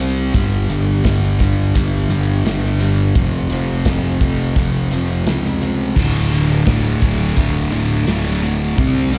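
A crunchy overdriven guitar opens this sunny, driving classic rock excerpt at 85 BPM, its slapback-echoed riff moving through G5, F5 and D5 chords alongside a fuzzy, overdriven picked electric bass. A damped 70s drum kit with dark cymbals, a tight kick, tambourine and a rolled-off top sits up front from 0.3 seconds, while a grainy, bright tube shaker sounds faint and distant in a large room. A second, sludgy distorted guitar joins the riff at 6.0 seconds, and the whole performance has the feel of a live gig heard through the venue's PA with light recital hall reverb.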